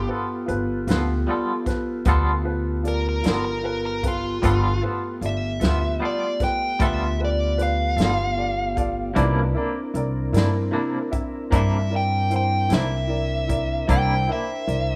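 This excerpt has the rough, roomy feel of a home demo, with small-room ambience and a light studio reverb. It is a soulful, swaggering slow blues in 12/8 at 51 BPM, tuned to A4 = 438 Hz, resting on G9 before moving to C9 at 9.2 seconds. Up front, a dark, smooth electric lead guitar with overdrive picks out the melody, while a pizzicato upright bass with steel strings gives a woody, thumpy low end. A mellow tonewheel organ holds soft, flute-like chords through a slow rotary speaker, its key click audible, and a worn, slightly detuned upright piano adds clear, open accompaniment. A twangy, fingered electric guitar with tremolo fills in the middle, and a natural-sounding acoustic country drum kit with a punchy kick, medium-tuned snare and hi-hat comes in at 0.5 seconds.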